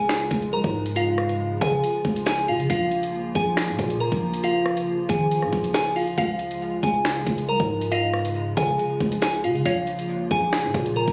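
A glassy, crystalline FM synth bell carries the melody up front, its vintage warble thickened by chorus and trailed by tape echo, setting a dark, menacing tone for this drill-style hip hop excerpt cut from a longer piece. Beneath it, a hollow, flute-like pad holds soft, detuned chords with an ensemble chorus and a long release, while a growling, buzzy 808-style bass gives the low end its weight. The electronic drill kit enters at 0.1 seconds in a half-time feel, with a knocking kick, sharp snare, metallic hi-hats, rim clicks and finger snaps, all carrying a tape-warm character. From 6.2 to 10.1 seconds, a woody, round mallet-like pluck adds a second line in the background, with its own chorus and tape echo. The whole sound sits in a digital ambience that suggests a phone recording in a room, with studio reverb and a layer of vinyl crackle.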